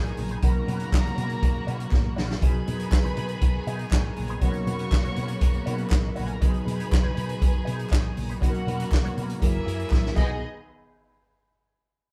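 An up-front vintage drum kit with a punchy kick and dark cymbals drives this glamorous, joyful disco excerpt at 120 BPM in B major, with fills at 1.9 and 9.9 seconds, while a round hollow-body bass sits in the background, a tine electric piano through its built-in speakers and a compressed electric guitar with wah and spring reverb fill out the accompaniment, a biting string section holds sustained chords beneath a lush, distant violin line played sul tasto with vibrato, and very quiet congas and crisp group handclaps from 0.9 seconds complete the percussion in a live-room sound.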